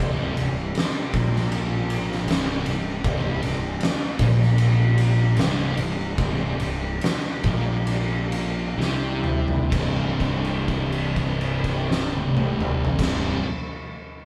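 A hypnotic, heavy stoner-doom fragment cut from a longer piece opens on two dark, picked fuzz guitars grinding out a low riff in the background, a growly, overdriven fingered bass and a very quiet, shouting tonewheel organ holding sustained chords through a slow rotary speaker, before an oversized, low-tuned drum kit with a fat snare, punchy kick and a gritty, saturated sound in a stone room sits up front from 0.4 seconds, the live band in one room with moderate reverb slowing down from 3.0 seconds until a drum fill lands on a held note at 9.7 seconds.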